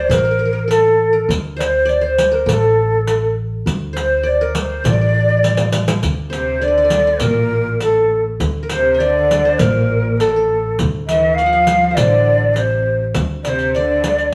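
Arabic maqam ensemble in D maqam saba at 101 BPM, passionate and warm, where a breathy, end-blown ney carries the up-front melody with vibrato over a bright, plectrum-plucked qanun second line, a growly pizzicato upright bass, and a softly played riq with dark jingles, with a drum fill at 5.4 seconds before a woody, bowed cello section enters at 6.3 seconds, all played live in a small stone room with moderate reverb in this cut from a longer piece.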